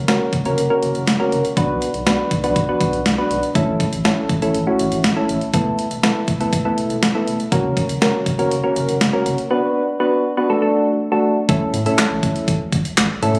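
A clean, sampler-style drum machine drives a straight 4/4 groove at 121 BPM, its thumpy kick, medium-tuned snare, handclaps and hi-hat sitting up front with a 12-bit digital edge and a small-room character. This short synth-pop excerpt, cut from a longer piece, feels bright yet wistful, moving through F#, Bm, A and Esus4 before returning to F# and Bm, then lifting through D into A, where a new section begins at 11.5 seconds. Underneath, a round analog bass plays low in the mix, its deep, nasal, sine-like tone sustained and dark. Soft electric-piano-like synth keys carry the accompaniment in the middle register, gentle and mellow with a decaying touch and a chorus shimmer that keeps them close and prominent. The sound is bathed in a lush hall reverb, and the recording has the casual, club-like ambience of a phone capturing the room.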